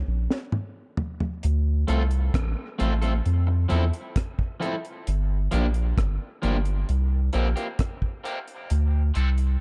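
Spacious and heavy, this dub reggae passage, cut from a longer piece, moves in a straight 4/4 through a small, dark-sounding room. A soft, round sub bass sits up front from the very start, its deep square-wave tone sustained beneath everything, while a dry, acoustic drum kit enters at 0.3 seconds with a drum fill across the opening break before a stop. The kit is smooth and dark with a rolled-off top, pairing a tight kick and a high-tuned snare with hi-hat, rim clicks and toms. An electric guitar at the edge of break-up arrives at 1.9 seconds, twangy and picked, high-pass filtered and trailed by dub echo, then given a filter sweep from 5.1 seconds onward. Beneath it the harmony cycles from Dm7 through Fmaj7, Gm7 and C7sus4 before returning to Dm7.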